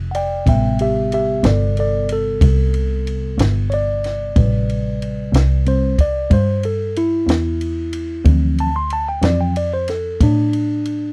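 A dry, close 1970s-style studio sound frames this brooding, mournful slow blues fragment in 12/8, where a worn, slightly out-of-tune tine electric piano carries the solo over Am7 before moving to Dm7 at 8.3 seconds, a bowed double bass sings expressively with vibrato and portamento, and a compact acoustic cocktail drum kit offers a dark ride cymbal, a high-tuned snare and a tight kick.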